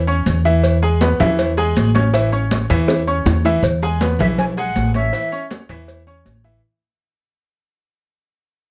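A woody, dark upright bass opens this festive, danceable salsa excerpt at 160 BPM in E major, played pizzicato on steel strings and sitting up front. A bright, polished grand piano joins at once with short-sustained accompaniment, alongside ringing, high-tuned congas struck with hard hands and mellow, grainy maracas. Tight cowbell and bongos fill out the vintage, band-limited percussion, and a drum fill arrives at 2.9 s as the harmony moves between A and E. From 3.6 s the music begins to fade out, and at 4.2 s a distant silver concert flute enters with a pure, straight-toned phrase, its crisp attack lending an expressive touch. Close, detailed microphones and light reverb keep the whole band clear and lively.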